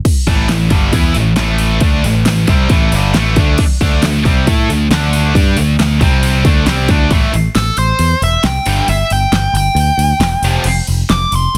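Hard rock with a driving, menacing edge, built on a punchy pop drum kit with a fat snare and metallic hats, a bright, double-tracked high-gain guitar riff and a growly picked bass, until the kick and snare drop out at 6.9 seconds and a nasal, overdriven lead guitar with a parked wah and digital delay takes a solo from 7.6 seconds, all in a dense, heavily limited modern master.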